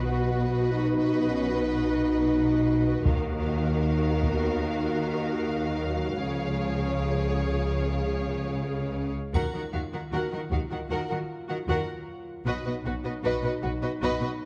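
Heard through worn, warbling cassette tape with a soft, dulled top and a moderate concert hall reverb, this dark, heroic excerpt of an epic orchestral film score moves at 77 BPM in Eb minor: an expressive violin section carries the melody over a second, woody violin line, lush viola and focused cello sections, an up-front double bass section and distant French horns holding sustained chords, while heavy-sticked taiko drums strike at 3.1 and 9.3 seconds, the second time joined by a faint, bright triangle.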